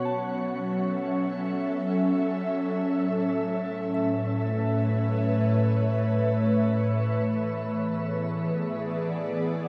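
An ethereal, airy synth pad sits up front from start to finish, its detuned sawtooth and triangle layers with a faint noise layer entering on a slow attack and holding mellow chords from F#m7 through Aadd9 to a closing E7 at 6.9 seconds, thickened by ensemble chorus. Far beneath it, a very quiet FM bell with a pure, full-bodied tone plays gentle high arpeggios until 6.9 seconds, each note struck quickly and decaying. A long shimmering reverb bathes this melancholic yet serene ambient fragment, cut from a longer piece.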